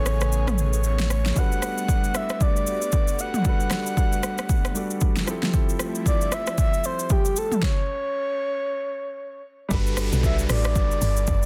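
A breathy, flute-like synth lead with vibrato, chorus and delay floats up front in this relaxed, swung amapiano excerpt. Beneath it sit a smooth vintage grand piano, a lush, detuned pad pumping in the background, a brief punchy sub bass at the start, and an overdriven deep house kit with a fat snare. After the pad ends at 7.6 seconds and the groove stops, the drop lands at 9.7 seconds with a round, dark log drum bass, woody marimba stabs with delay, and an electronic downlifter, all in a dry, dense, heavily limited mix.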